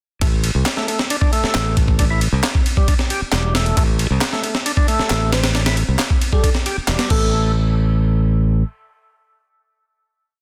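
Breakbeat at 135 BPM in A minor, a swaggering, raw groove built on a gritty, compressed looped break with edits, its thumpy kick, medium-tuned snare, crash and ride sitting up front in a large room beside a growly, punchy fingered bass playing a dub-style line. A thick, overdriven tonewheel organ repeats a 32-step riff through a slow rotary speaker, 12-bit sampler grit and dub echo while a filter sweep runs across it, with layered, overdriven electronic handclaps tucked behind. At 5.3 seconds a bell-like FM electric piano adds short, sparkling answering phrases through chorus, phaser and a telephone tone, before the groove gives way to a final hit at 7.3 seconds, where the bass rings on until 8.6 seconds.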